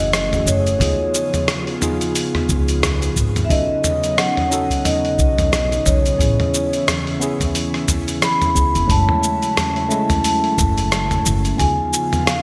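Sunset chillout with a warm, relaxed mood, this excerpt from a longer piece moves at an easy pace with a gentle swing on the sixteenth notes. A soft-mallet vibraphone carries the melody with a metallic, ringing, close-miked tone, trailed by digital delay and shimmer reverb. A worn, slightly out-of-tune tine electric piano plays lightly overdriven accompaniment beneath it, while an airy, breathy pad with chorus and shimmer sustains mellow chords over a progression that opens on F#m9 and C#7. A woody, thumpy pizzicato upright bass anchors the low end until 11.7 seconds. A gritty, tape-toned sampler-style kit sits up front with cabasa, hi-hat, rim click and toms in gated reverb, and a deep analog-style electronic kick sits in the background from 0.8 seconds. The mix has a bright 1980s-style digital sheen and a lush hall reverb.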